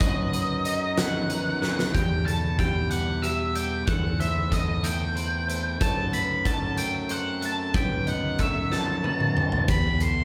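Post-rock in a slow 6/8, this cathartic and cinematic passage is cut from a longer piece and captures a band playing live together in one room with a moderate, large studio reverb. Up front, an octave-fuzz lead guitar carries the melody high in its range with a dark, distorted edge. Beneath it, two clean, picked twelve-string electric guitars spin compressed arpeggios in the background, one warm and low, the other bright and twangy in a higher register. A fuzz-laden fingered bass adds a growly, overdriven floor. The huge arena drum kit sits forward with a punchy kick, a fat snare, hi-hat, crash and toms, throwing in fills at 1.6 seconds and again at 8.7 seconds as the chords move from B over F# into E minor and onward through a diminished turn.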